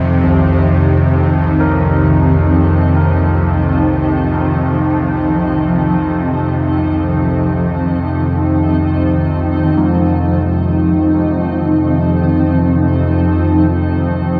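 A granular cloud pad and a tense, string-like bowed drone open together, both up front, the pad's bright, blurred, evolving haze set against the sawtooth-edged drone, which carries vibrato and a ring-modulated grit in this dark, desolate ambient drone cut from a longer piece. From 0.2 seconds, carillon bells ring out in arpeggios in the background, their bronze, padded tones trailing through a diffuse delay. A cathedral-scale reverb soaks the whole mix into a dreamy, dimmed wash, with the harmony shifting from an F7sus4 to a bare F5 at 9.8 seconds.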